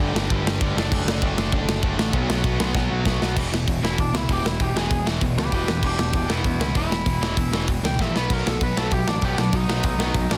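Rebellious and upbeat, this short cut from a longer punk rock track charges along in a straight 4/4 feel. Three bright, distorted electric guitars play riffs from the very start, two of them very quiet and one tucked in the background, while a growling, overdriven picked bass sits underneath. A tight metal drum kit enters at 0.2 seconds, sounding saturated, gritty and up front with a medium-tuned snare and crash, hi-hat, ride and kick, and it throws in fills just before the 3.4-second mark and again near 8.0 seconds. At 3.8 seconds a biting, warm overdriven guitar enters with a solo melody that runs to the end, carried over chords that move from G5 and D/F# through B5 to E5. The sound is dry and dense, with a heavily limited modern master that keeps everything pressed close and loud.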